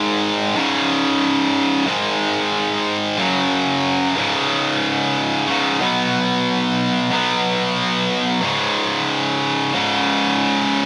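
A heavy, high-gain electric guitar takes the solo role from 0.0 seconds, its bright, distorted, double-tracked tone sitting up front as it picks through power chords on G#, C#, F# and B, ranging from C#2 to B3. The rock feel is menacing and weighty at a straight 92 BPM in 4/4, tuned slightly low to A4 = 439 Hz. A light reverb gives the sense of a band playing live in one room, and the clip is cut from a longer piece, ending at 10.9 seconds.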